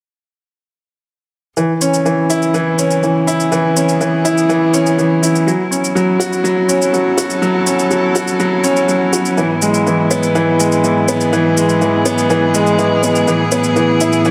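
Piano and strings electronica at 123 BPM in a cinematic, intimate mood, this excerpt opens at 1.6 s with a woody, up-front upright piano riff trailed by delay, over bowed string quartet chords with vibrato that fade in underneath and a layered, overdriven electronic shaker in a small room, with the chords moving from C#m through F#m and Eadd9/G# to Asus2 inside a lush hall reverb, tuned to A4 = 439 Hz.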